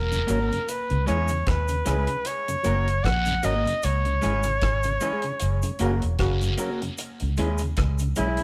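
Roots reggae at a laid-back 76 BPM in C# dorian, serious in mood and swung on the sixteenths, this short cut from a longer piece moves between C#m and F# chords. An up-front flugelhorn carries the melody from the first moment, punchy with vibrato, and takes a solo from 7.0 seconds to the end. Beneath it, a foam-muted fingered electric bass sounds round, dark and amped, while a deep acoustic drum kit with a tight kick and rolled-off top plays hi-hat, kick and rim click. A mellow tonewheel organ, lightly overdriven with chorus vibrato and a slow rotary speaker, is soon joined by an electric guitar through a small old amp, slightly broken-up and compressed with tape echo, while cabasa and guiro add a compressed, saturated texture with their own tape echo. The band hits an accent from 3.8 to 7.0 seconds, and a trombone section adds a brief warm second line between 5.8 and 6.8 seconds, all in a single room with light reverb.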